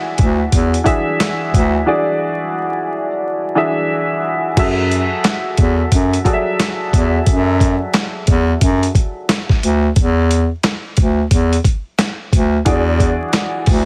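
Boom-bap hip-hop in F# minor at 89 BPM with a moody, dark swing: a worn, woody, slightly detuned upright piano with cassette-tape coloring opens at 0.0 s on E9 chords before the bass clarinet and the gritty, pitched-down sampler drum kit with its thumpy kick, handclaps and crash enter at 0.2 s, a break arrives at 1.9 s, and the harmony moves to F#m9 at 4.6 s, all inside a heavily compressed, radio-like sound with vinyl crackle.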